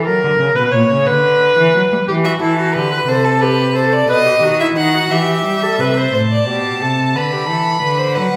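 A bowed viola and cello open this short excerpt together, the viola carrying the accompaniment with a rich, focused vibrato tone while the cello anchors the bass with expressive portamento. This is a baroque-style fugue for string quartet in E minor and 6/8, moving at 59 dotted-quarter beats per minute with a straight, driving feel and a serious mood. A clear, close violin enters at 2.2 s with a second line, and the harmony passes through chords such as Bm/D, Am/C and B before settling on Em. At 6.2 s a second violin takes up the melody high in its range, smooth and even but set back at a distance, just as the viola drops out and the music turns toward Am and a rootless G/D. The players sit in the reverberant space of a church or concert hall, whose lingering 1.4-second tail gives the ensemble a resonant glow.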